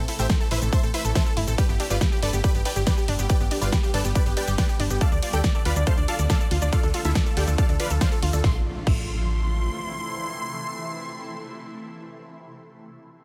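A punchy, up-front electronic kick drives this soaring excerpt of uplifting trance at 140 BPM in A minor, alongside a huge snare with hi-hat, shaker, ride and crash from the layered dance kit, a dark, round FM bass with tube saturation, and huge, detuned supersaw chords carrying the lead melody through digital delay, while a nasal, wave-folded pluck arpeggio and an ethereal, shimmering pad with phaser sit in the background, all pumping to the sidechain through Am, G and Dm. The drop gives way at 8.4 s to a sustained tail over a very quiet electronic impact.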